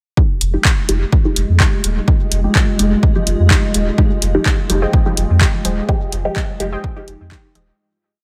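A punchy, tape-warm electronic kick sits up front, driving a four-on-the-floor pulse through this hazy, hypnotic dub techno piece at 126 BPM in F minor, which starts at 0.2 seconds on an Fm9 chord. Around it, a programmed analog drum machine lays down closed hats and a clap backbeat with dub echo, while a soft, round sub bass plays off-beat notes that pump against the kick. A muted, detuned dub chord stab moves one shape in parallel in a dotted rhythm, colored by phaser and dub echo and shaped by a filter sweep that runs across the piece. Underneath, a dark, moody pad holds sustained chords with chorus and reverb, and a very quiet, flickering granular texture holds a single high note. From 4.7 seconds, echoing congas sit in the background, joined by a warbling, lo-fi, nasal pluck playing sparse chorused chord stabs, before a fade-out that begins at 5.3 seconds.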